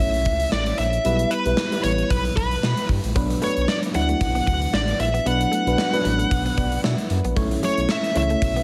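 Light reverb and studio ambience frame this dramatic, moody 1980s-style pop excerpt in B minor at 114 BPM with a gentle 16th-note swing, where an up-front, distorted high-gain lead guitar carries the melody over a glassy, bell-like FM electric piano accompaniment that adds a fill at 5.8 s, a smooth sawtooth synth bass, and a punchy gated 80s drum kit of kick, medium-tuned snare and hi-hat in a bright stone room, while a clean, compressed, direct-recorded electric guitar riff enters in the background at 3.2 s.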